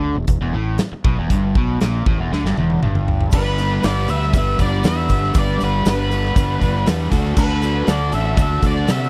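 A bright, overdriven electric guitar riff, double-tracked, compressed and up front, opens this gritty, brooding classic rock excerpt alongside a growly fingered bass thick with fuzz, both sitting on E minor at a straight 119 BPM in 4/4. A big acoustic rock kit joins almost at once, with a punchy kick, a medium-tuned snare, hi-hat, toms and bright crash cymbals, and a drum fill from 2.3 seconds carries the band into a new section. At 3.3 seconds the harmony moves to G, and a dark octave-fuzz lead guitar enters with a picked, distorted melody coloured by wah, while a grainy tube shaker ticks away in the background. The chords shift to D at 7.1 seconds as the passage pushes on, and it is cut from a longer piece. The sound is dry and close, in the manner of a 1970s studio recording, with little reverb.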